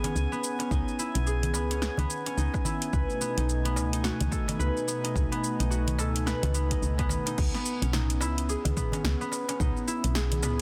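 A swung sixteenth-note groove in four drives this mystical, earthy slice of organic downtempo, built on a layered deep house drum kit with a punchy snare, metallic hats, shaker, toms and crash, all roughened by overdrive and set in a small room. An overdriven electronic kick with a deep weight joins at 0.7 seconds, while a small metal-shell darbuka played with soft hands adds crisp, high accents in the background. Up front, a woody, round FM bass enters at 0.2 seconds with a fast attack and dark decay, pumping with sidechain compression, as a fingerpicked concert harp rings out arpeggios through a delay. Beneath them, a smooth, detuned sawtooth pad holds sustained chords with chorus and the same sidechain pumping, moving from C#m9 to B7. A glassy texture of drifting sine overtones hovers high and calm in the background until 7.4 seconds, and the whole passage, cut from a longer piece, comes through a dense, heavily limited modern master with light reverb.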